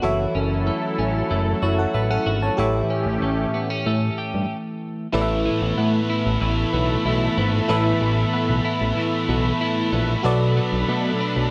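Lightly reverberant and glossy, this uplifting 94 BPM pop excerpt in 4/4 sets a fat, saturated analog bass up front beneath a glassy, bell-like FM electric piano, a smooth, detuned analog pad and a clean twelve-string electric guitar riff with chorus and delay, and after a brief stop at 4.5 s a scooped, high-gain distorted guitar and round, dark synth brass stabs in the background join at 5.1 s as the chords move from F#m7 and A7 to Asus2 and Bm7.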